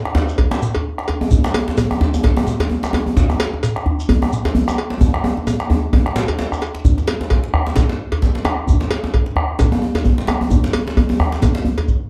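A driving 130 BPM groove in 4/4, swung on the 16ths, propels this earthy West African drum ensemble cut from a longer piece. A deep, dark bombo sits up front in a large room, while two djembes are struck with hard hands, both warm and deep, one of them carrying metal rattles and set distant in a large room. A grainy, mellow shekere and a metallic cowbell complete the group. A drum fill runs from 5.0 seconds into a new section at 6.8 seconds, all within a dark production with light reverb.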